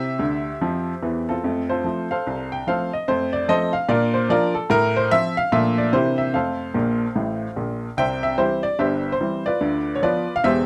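A solo upright piano opens this exuberant stride jazz passage with a fill at 0.2 seconds, setting a swinging 4/4 feel at 147 BPM in F major. The piano sounds woody and intimate, sitting up front with a polished clarity, and the clatter of its action is audible beneath the notes. Its range reaches from E1 up to G5, and the harmony moves from C through F and Bb to a Bbmaj7 and a C9 before settling back on F. A second fill arrives at 6.7 seconds, leading into a new passage at 8.0 seconds that returns to C and closes on a Bdim/D. The instrument sits in a moderate club reverb with a dark production, and the clip is cut from a longer piece.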